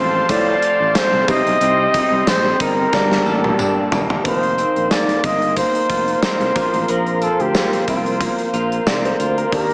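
Moody and urgent, this 1980s-style pop excerpt moves at 91 BPM with a light sixteenth-note swing. A distant, roomy flugelhorn with light vibrato and digital delay carries the melody up front, over a detuned, warbling sawtooth pad with chorus, a growly fretless bass, a clear piano in the background and a twangy, slightly broken-up guitar riff drenched in lush chorus, while a lo-fi, double-tracked garage guitar plays very quietly until 4.3 seconds. Gated 80s drums with a punchy kick enter at 0.3 seconds alongside a jingly tambourine, and a drum fill from 2.9 to 4.2 seconds leads into the second section, all heard through a small-speaker sound with light room reverb.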